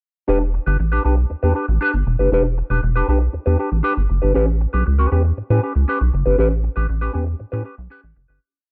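At 0.3 s a rubbery, hollow square-wave bass and a mellow, clean electric guitar start together on a sultry, danceable disco groove at 118 BPM in E dorian. The bass plays a bouncy, syncopated line with muted ghost notes and a resonant filter pluck, while the fingered guitar plays choppy sixteenth-note parts through a wah pedal, moving from Em7 to A9 at 4.3 s. Light reverb and digital ambience give the production a dark, warm sound before the whole piece fades out from 6.4 s.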